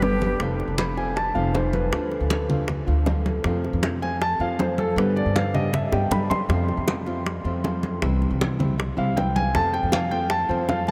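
Danceable and warm, this Cuban son and guajira groove moves at 158 BPM in a straight 4/4, cut from a longer piece and set in a vast, echoing space with a huge, wet reverb. An up-front concert grand piano with a deep bass plays arpeggios and takes a solo from 0.4 seconds over a progression that centers on F and passes through Dm, G and C. A dark, full-bodied nylon-string guitar is fingerpicked in classical style beneath it, and a thumpy, woody pizzicato upright bass on gut strings sits up front. Bright, hard-handed congas with a vintage, band-limited tone and tight, high-tuned bongos in the background fill out the percussion, with a drum fill at 5.7 seconds.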